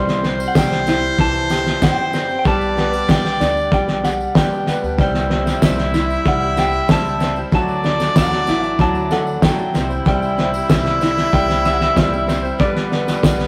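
In this warm, anthemic indie folk passage at 95 BPM, the cloth-damped drum kit's muffled, gritty kick and fat snare sit up front beside a distant tambourine. A dark, slightly broken-up electric guitar with tremolo carries the melody over a distant, classical-style trumpet line, brilliant upright piano arpeggios, a boxy swing-style acoustic guitar and woody pizzicato upright bass, moving through C, G/B and Dadd9. A soft, floating chamber string section enters at 5.0 seconds to fill out the building arrangement, all set in a rough rehearsal-room recording with moderate stone room reverb.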